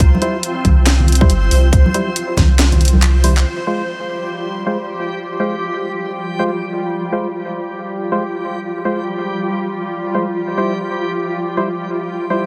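A cloudy, blurred granular pad with its own reverb and a reversed, dreamy swelling texture open this dark, meditative deep dubstep excerpt at 139 BPM in a swung half-time feel in F harmonic minor, over a round, up-front sub bass, a tight layered kick, a garage kit with cracking snare, bright hats and handclaps, and soft-handed congas in the background with dub echo, while a hollow, percussive organ stab with chorus and dub echo enters at 0.2 s; a drum fill replaces the kick before the chords move from C to Fm at 3.5 s, after which the drums and bass fall away, leaving the pad, texture and stabs to drift in light digital ambience until the harmony returns to C at 10.4 s.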